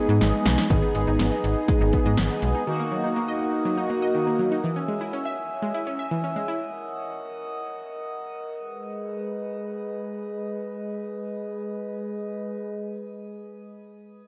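A fat, brassy analog synth brass stands up front over the opening 4.6 seconds of this melancholic, nocturnal synth-pop excerpt in G# minor at 122 BPM, joined briefly by a snappy, metallic FM bass and a punchy, tape-toned analog drum machine whose fill at 0.2 seconds leads in before both drop out by 2.5 seconds. A round, detuned analog pluck with chorus and slapback echo spins arpeggios until 6.6 seconds, while a glassy, ethereal glass harmonica holds sustained chords to 12.7 seconds as the harmony moves from G#m through D#m and C#m and back to G#m. The mix sits in a moderate scoring-stage reverb, with shimmer reverb on the brass, pluck and harmonica, and the top end rolls off above 7.8 kHz.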